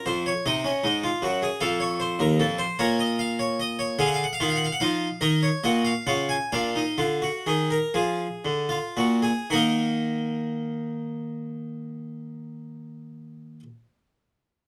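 A solo harpsichord opens this brief excerpt from a baroque-style three-part fugue in 6/8, its airy, plucked Flemish tone sitting up front with a full, brilliant sound drawn from three sets of strings. The contemplative yet driving lines move through harmonies in Eb minor, stretching out as the pace slows from 2.8 to 9.5 seconds before a new section begins at 9.5 seconds. Close, detailed microphones capture the instrument in a moderate studio reverb.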